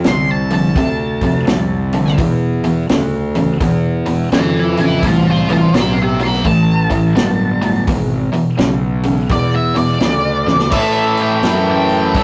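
A biting, overdriven, double-tracked guitar riff opens this gritty, brooding blues rock and southern rock passage together with a growly fuzz bass and a vintage acoustic drum kit, with the octave-fuzz lead guitar joining at 0.1 seconds. The tempo sits at 84 BPM in 4/4 with a swung eighth-note feel, in A minor. The picked riff guitar and the overdriven, fingered bass sit up front in the mix. The bass is direct and amped, and the drums have a natural small-room character with a medium-tuned snare, a punchy kick, crash cymbal, hi-hat and a rolled-off top. Above them, the dark lead guitar carries the melody through wah and distortion as the harmony moves from F through E5, Am9 and E7. A drum fill at 10.4 seconds leads into a lead guitar solo from 10.7 seconds over an A7 chord with its third omitted, all set in moderate studio ambience with the rough, tube-saturated sound of a rehearsal-room recording.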